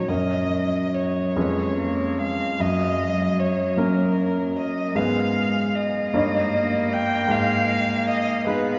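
This classical excerpt is a slow, romantic piano trio movement in 6/8, cut from a longer piece. It moves with a yearning, solemn rubato at around 46-53 BPM in dotted quarters, in F# major, tuned slightly low to A4 = 437 Hz. A single bowed violin carries the melody up front between A#4 and G5, its tone dark and woody with vibrato. Beneath it, a solo cello plays a second line in a narrow low register, bowed sul tasto with a soft attack, a pure, floating quality and a smooth top. A baby grand piano supplies an intimate, natural accompaniment, sitting up front with audible action noise, while the harmony passes from F# through C#7/E# and back before turning to G#m, D#7/G and G#m again. A cathedral-like reverb with a 5.1-second decay bathes the trio in the resonance of a church or concert hall.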